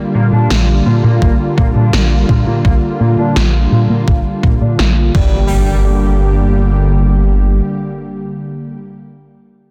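Synthwave at 84 BPM in G minor, driving and moody, where a smooth, detuned sawtooth pad holds sustained chords over a dark, glossy chorused synth bass, a double-tracked overdriven guitar riff drenched in lush chorus and delay, both bass and guitar carrying a filter sweep until 5.5 seconds, a thumpy, tape-warm electronic kick up front, and 80s pad drums with a gated, overdriven snare and crash, before the harmony moves from Bb6 to Gm at 5.1 seconds, where a very quiet electronic impact enters beneath light digital ambience in a dense, heavily limited mix.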